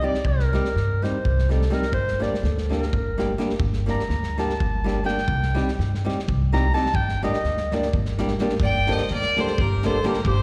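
A mellow, classical-style clarinet carries a solo through the first 8.6 seconds of this bittersweet, restless Balkan wedding-band excerpt in G minor, moving at 251 BPM in a straight 7/8 over chords shifting between Cm and Gm. Up-front fingerpicked flamenco guitar and a woody, growly pizzicato upright bass support it, with a loose indie drum kit's punchy kick and medium-tuned snare sitting mid-forward; guitar, clarinet and the later fiddle carry slapback echo. At 8.6 seconds a single intense bowed fiddle with light vibrato takes the melody, and the whole piece sounds like a live gig heard through the venue's PA.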